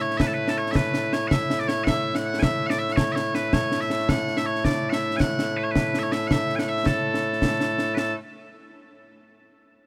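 A straight 6/8 pulse at 108 dotted-quarter beats per minute drives this short cut from a longer piece of Scottish traditional pipe music in A major, ceremonial and stirring in mood. Loud, bright bagpipes carry the melody up front, their piercing, continuous tone spanning A2 to G#5 from the opening second, while concert snare and bass drum with dark cymbals join at 0.1 seconds, close and acoustic in a light reverb. Both parts stop at 8.1 seconds, just after a new section begins at 8.0 seconds.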